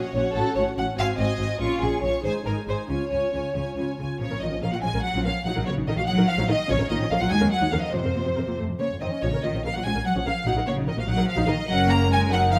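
Heard through close, detailed microphones on a scoring stage with a moderate reverb tail, this restless, dramatic passage cut from a quick classical-period movement for string orchestra moves in 6/8. A rich, focused violin section carries the melody with lush vibrato, while a second violin section, softer in attack and more distant, sings an expressive second line beneath it. The viola section fills in the accompaniment with a dark, woody tone, and the cello section holds the bass with a smooth, even sound and only light vibrato. A warm double bass section joins at 0.1 s to anchor the lowest register. After an opening that moves through shifting chords before landing on a major chord, the harmony turns to minor at 4.2 s and presses through seventh and suspended chords until the passage breaks off at 12.6 s.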